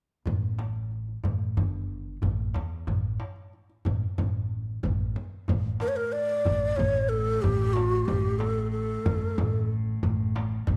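Stately and festive, this excerpt of a Turkish makam ensemble in A makam hicaz moves at 92 BPM in a straight 4/4, opening with a growly, woody pizzicato upright bass up front alongside a crisp, deep metal-shell darbuka and a close, dry frame drum struck with hard hands. At 5.5 seconds a sul tasto cello enters holding a pure, floating drone on A2, and at 5.8 seconds a breathy, end-blown low ney takes the melody up front with vibrato, tongued notes and an unsteady tone before dropping out at 9.7 seconds. Light reverb and a dark, warm production frame the ensemble.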